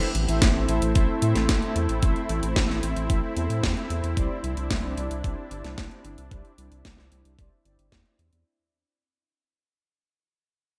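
Playful and sunny, this italo disco excerpt fades out over its full length, with a thick, detuned sawtooth pad holding chorused chords from Am to Cadd9, bold, brassy synth stabs with chorus, delay and a filter sweep sitting in the background, a deep, round, wave-folded analog bass pushed up front with tube saturation, a layered house kit whose cracking snare and hi-hat carry gated reverb, and a gritty, thumpy overdriven kick entering at 0.4 seconds, all in a bright 1980s-style digital production with light ambience.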